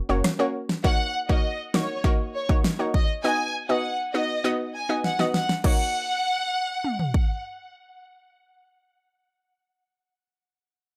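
A chorused analog pluck opens this sultry, tough dancehall excerpt on a Gb chord: a round, detuned blend of sawtooth and square waves with a noise layer, a filter sweep and a moving notch, its fast attack and short decay giving a bright, up-front accompaniment. A punchy pop drum kit arrives at 0.2 seconds at a straight 100 BPM in 4/4. The kit is electronic and layered, with a fat snare, metallic hats, rim clicks, toms and crash cymbal, all given an overdriven edge. From 0.8 seconds a lush studio violin section carries the melody high in the register, bowed as an expressive ensemble with vibrato and a tape echo trailing behind it. The harmony in Eb minor moves from Ebm7 to B and back to Ebm7, with a drum fill at 5.0 seconds leading into the second section. The drums and violins fall away near 7.4 seconds, leaving the pluck to ring on under a light reverb.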